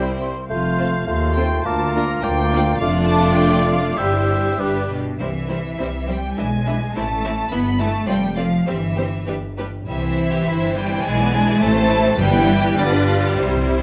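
In a rubato 2/4, this lively, spirited classical-period orchestral movement, cut from a longer piece, gives the melody to a smooth chamber violin section over a second violin line, a focused viola section, and a cello section and up-front double bass section carrying the bass. Through the opening phrase, an airy, hollow flute, a vintage-toned oboe, a bright clarinet in the background and a warm bassoon thicken the texture, then drop out at 4.9 seconds; very quiet timpani with hard mallets enter at 5.2 seconds and close with a fill from 13.4 seconds. A moderate recital hall reverb surrounds the ensemble, and close, detailed microphones catch the rich, lush vibrato of the bowed strings.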